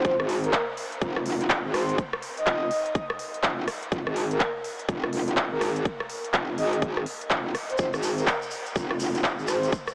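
Swung sixteenths drive this swaggering, gritty bass house excerpt, where an overdriven, punchy electronic kick and a layered dance kit of handclaps, crisp hi-hats and rim clicks sit up front beside a metallic, distorted wobble bass that pumps with sidechain compression through chorus. Above them, a soft, breathy flute-like synth lead with vibrato carries the melody, blurred by lush chorus and diffuse delay. A grainy tube shaker enters at 7.8 s, and the whole dreamy mix is soaked in a huge reverb with a small-speaker sound.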